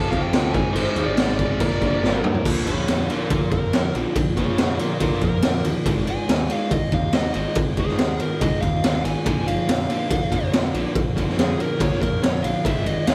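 A straight, driving 4/4 at 141 BPM powers this swaggering classic rock excerpt in Bb mixolydian, where a raw, gritty garage drum kit with a punchy kick sits up front and fires a fill at 2.0 seconds into a dark, smooth lead guitar solo from 2.5 seconds, carried by slapback echo over a compressed overdriven rhythm guitar riff with spring reverb, a very quiet sludgy distorted guitar riff, a round, growling picked bass in the background, and a faint, dry, metallic cowbell, all set in a lush hall reverb for a big arena sound.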